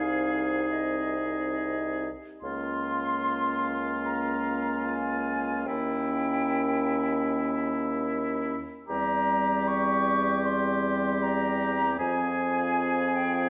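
In free time, this slow romantic movement for wind quintet unfolds in a tender, lyrical mood across 13.5 seconds, cut from a longer piece and tuned to A4 = 442 Hz. The silver concert flute carries the melody from Eb5 to Db6 with an airy, mellow metal tone, soft attacks and expressive vibrato. Beneath it, the oboe sings a clear second line placed up front with light vibrato. The clarinet gives warm, present accompaniment, while the French horn adds a distant, roomy layer and the bassoon anchors the bass from C2 to F2 with a touch of vibrato, sounding set back in the hall. The harmony passes from Ab/C through Bbm/Db, Eb7b9 and C7/E before settling on Fm at 12.0 seconds, the ensemble bathed in a wet recital hall reverb.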